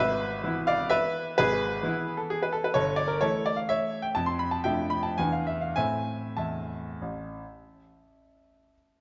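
A dark, warm production places a solo grand piano up front in a moderate recital hall, its reverb lingering about 1.9 seconds around each phrase. This short classical piano waltz in 3/4 moves with an elegant, wistful rubato, its tempo drifting between 95 and 137 BPM, and it is tuned to A4 = 438 Hz. The piano itself sounds bright, brilliant and smooth, with a vintage character and short sustain, and it spans a range from G1 to C6. Across its nine seconds, cut from a longer piece, the harmony moves from E/G# through A7/G at 2.8 seconds and Dm/F at 4.2 seconds, passing an open E5 before settling on A minor at 5.8 seconds.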